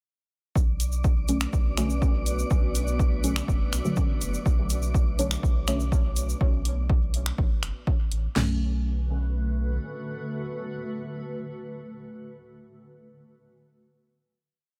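Dub techno at 123 BPM in B minor, this short, nocturnal piece sets a punchy four-on-the-floor kick, fat snare, toms and crash against programmed hats and finger snaps, a round, soft sub bass, a grainy hand-played tube shaker, an airy wind-like noise texture holding a high note, and sparse, dark chord stabs with chorus, phaser and dub echo over a cloudy granular pad, with the groove running from 0.6 to 8.4 seconds before a final Bm7 chord rings out to 12.3 seconds in a digital ambience.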